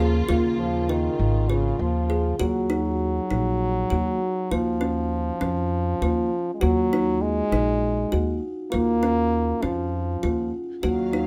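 A pizzicato upright bass sits up front with a woody, steel-strung tone, anchoring this pensive yet urgent contemporary chamber piece in 7/8 at 199 BPM in eighths, with a straight feel in Eb minor. Beside it, a French horn in classical style carries a warm, solo second line in its low register. A kalimba plays ringing, thumbnail-plucked arpeggios through the whole passage, with a solid-board tone and a boxy small-room character. A dark, lush string section with vibrato holds bowed chords in the opening over a Db6 harmony, drops out at 2.4 seconds as the music moves to Ebm, and returns at 10.8 seconds. The harmony then passes through Eb7sus2 and Bbm/Eb, and the close, detailed sound with little reverb keeps each part distinct in this short passage cut from a longer piece.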